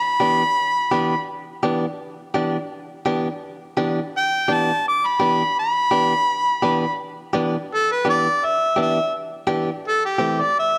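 A clear, overdriven harmonica opens this soulful, smoky blues fragment in E minor, carrying the melody up front with a light vibrato and a pop-style solo voice. At 0.2 seconds a clean, compressed electric guitar, recorded direct and picked, joins with short stabs over a straight 4/4 pulse at 84 BPM, the harmony resting on Em7 before moving to Am7 at 9.8 seconds. A moderate echo chamber reverb gives the performance a lingering, smoky space, and the tuning sits slightly low at A4 = 436 Hz.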